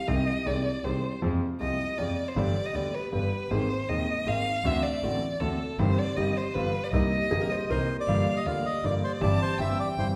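A warm, bowed violin opens this sultry, passionate rubato tango fragment in triple time, soloing with expressive vibrato and portamento over a deep-bassed vintage grand piano with short sustain and a dark double bass bowed sul tasto with a soft attack. A clean, compressed hollow-body electric guitar picks a brief line from 7.3 s, and at 7.7 s a reedy, up-front bandoneon takes the melody. The whole ensemble sits in the wet reverb of a recital hall, moving through minor-key harmony from Ab/C and Fm through D7 and G7 toward Cm7, Gm7 and C/G.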